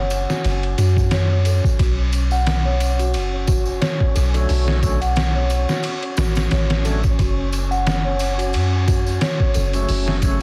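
Dark, smoky trip hop at 89 BPM in F# minor, cut from a longer piece, where delicate, bell-like celesta arpeggios with digital delay sit over a deep, round 808-style bass, a breathy wind-like noise texture and a gritty, pitched-down sampler drum kit with a thumpy kick and tape-warm tone, while a tambourine sits in the background, an overdriven tonewheel organ with slow rotary speaker, tremolo, 12-bit grit and tape echo enters at 4.3 seconds, and the chords move from F#m to Bm7 and back over a dense, heavily limited master with vinyl crackle.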